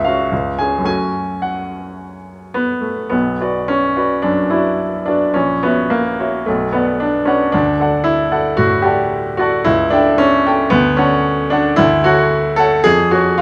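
A clear baby grand piano sits up front in a recital hall, its open tone with short sustain wrapped in a wet reverb that lingers for 1.3 seconds. This brief cut from a longer Romantic character piece for solo piano has a bittersweet, brooding mood, moving with rubato in 4/4 at roughly 103 to 116 BPM, tuned to A4 = 441 Hz. The opening bars settle in F# minor, touching C# before resting on F#m, and at 3.1 s the music shifts into B minor. From there the harmony passes through F#7/A# and back to Bm, then opens toward D, A7/C# and Dmaj7 before landing on C#/E#. The piano ranges from A#1 up to G#5 and plays alone throughout, until the cut ends at 13.4 s.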